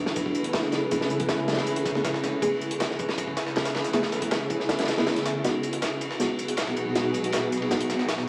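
A deep, sine-like 808-style bass sits barely audible beneath this raw, frenetic drum and bass excerpt, joined almost at once by two layered breakbeat kits. The upfront crunchy kit carries kick, ride and a medium-tuned snare with a saturated, gritty character, dark cymbals and a rolled-off top, while a pitched-up, compressed sampler-style kit adds hi-hat, tambourine and a high-tuned snare that sounds re-recorded in a large room. From 0.9 seconds a soft, nasal chord stab with a filter-pluck shape drifts in the background, thickened by chorus and dub echo as a filter sweep on it drives the whole passage as a build-up. The harmony moves from F#m11 to G#m7 at 5.4 seconds, where a drum fill runs until the end. A wet small room, a home cassette recording and vinyl crackle give the recording a homemade, lo-fi grain.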